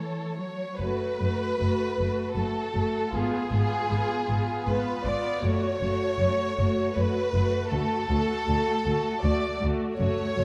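Classical slow romantic movement for string orchestra in F# minor at 79 BPM in a rubato 3/4, warm and serene, cut from a longer piece. Two bowed violin sections share the upper register, the melody sitting in the background behind a rich, up-front second line, while a lush cello section carries the bass from the start; a distant-sounding viola accompaniment and a smooth, even double bass section join at 0.8 seconds. The expressive vibrato playing moves through F#m, G#dim7 and D harmonies in a dark production bathed in concert hall reverb.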